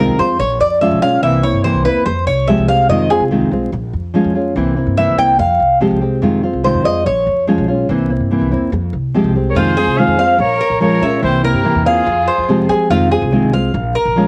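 Cuban son and guajira at 144 BPM in F harmonic minor, this warm, nostalgic excerpt opens with a metallic, picked tres soloing in arpeggios over full-bodied fingerpicked nylon-string guitar and a woody, thumpy pizzicato upright bass cycling through Bbm7, C7, Fmadd9 and Fm7, before a punchy, vintage trumpet melody with vibrato and a lush bowed violin section in the background arrive at 9.5 seconds, all carrying the character of a home cassette recording with vinyl crackle.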